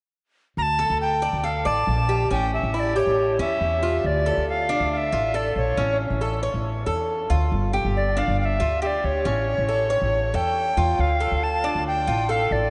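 Drenched in a long cathedral reverb, this cut from a longer piece of Cuban son and guajira sounds as if played in a vast, echoing space, its top end dulled above 10.8 kHz. At 138 BPM in D harmonic minor, a bright, reedy tenor recorder with breathy chiff and vibrato carries a sultry melody up front, and a woody, thumpy pizzicato upright bass on gut strings sits beneath it, both entering at 0.6 seconds. From 0.8 seconds a Cuban tres adds metallic double-string arpeggios with some octave-doubled strings, moving through Dm, A and G chords until the cut at 12.7 seconds.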